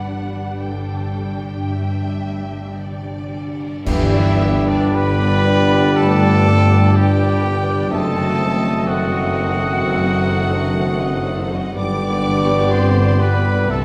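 Classical in character, this is a slow, lyrical romantic movement for symphony orchestra in G major, moving at about 53-64 BPM in 4/4 with a flexible, rubato feel, and it is cut from a longer piece. It opens with dark, woody violin sections carrying the melody and a lush second line over expressive viola accompaniment, a ringing, thumb-plucked harp playing arpeggios, and a smooth cello and rich double bass foundation in the background. At 3.9 seconds the full band enters with an accent: clash cymbals and concert bass drum strike briefly, a clear trumpet adds stabs, and mellow French horns and bright trombones hold sustained chords over a mellow tuba bass. Woodwinds fill in around the strings, with an airy, close-miked flute, a distant, roomy cor anglais and clarinet on second lines, and a soft bassoon in the accompaniment. The harmony settles on G, passes through an F#dim7, and returns to G, all heard from further back in a reverberant scoring stage.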